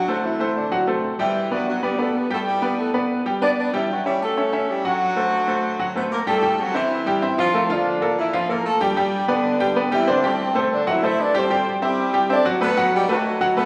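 Latin music with a festive, danceable lift, a short passage cut from a longer piece in straight 4/4. A dark, punchy horn section carries the melody up front in octave doubling with light vibrato, its pop-style ensemble sound made distant and roomy by the hall, while a bright grand piano with a brilliant yet worn tone and short sustain plays the accompaniment throughout. The wet recital hall reverb surrounds the pair as the harmony moves from D7 and Gmaj7 into a second section around 6.3 seconds that turns through Am7, Bbmaj7 and D13 before closing on B7.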